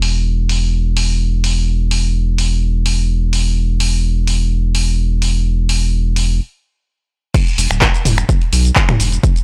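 A saturated sub bass and a punchy analog drum machine open this gritty, driving acid house excerpt at 127 BPM in a straight 4/4, tuned to A4 = 441 Hz. The deep, thick sine bass sits up front with a fast attack and sustained notes between D1 and B1, thickened by tube saturation and pumping from sidechain compression. The drum machine supplies crash cymbal, finger snaps, handclaps, hi-hat, shaker and toms, each softened by a low-pass filter. After a stop from 6.4 to 7.3 seconds, the drop arrives with an up-front electronic kick drum that drives the closing section. The dry, hardware-sourced sound carries little reverb and a raw edge of transformer saturation.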